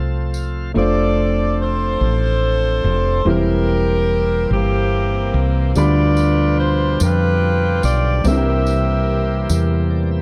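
An edgy, punchy saxophone section carries the melody up front from 0.8 s in this reverent yet jubilant slow gospel passage in F major at 48 BPM in 6/8, over a round, dark fretless electric bass, a natural-sounding concert grand piano with deep lows, sustained chords and fills from a shouting tonewheel organ with light overdrive and a slow rotary speaker, and a jingly tambourine that returns at 5.8 s, all captured in a dry, close 1970s-style studio sound with light reverb and cut from a longer piece.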